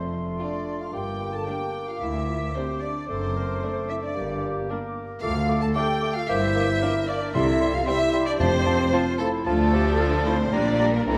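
In a flexible, rubato four-beat pulse, this quick classical-period movement for symphony orchestra has a graceful, lively character, heard here as a passage cut from a longer piece. The melody belongs to a lush violin section sitting in the background, entering at 0.4 s alongside a very quiet viola section whose bowed accompaniment has a focused, smooth top. Above them, a second line is shared by a rich chamber violin section, an airy silver flute with soft attack, a distant, roomy oboe high in its range, and a mellow solo clarinet. A present bassoon adds accompaniment, a dark French horn section holds sustained chords, and bowed cello and double bass sections anchor the bass with even, vibrato-laden tone. Timpani struck with hard mallets arrive at 7.4 s, articulate, close and dry, and stop at 9.2 s. A wet concert hall reverb surrounds the orchestra with a spacious glow.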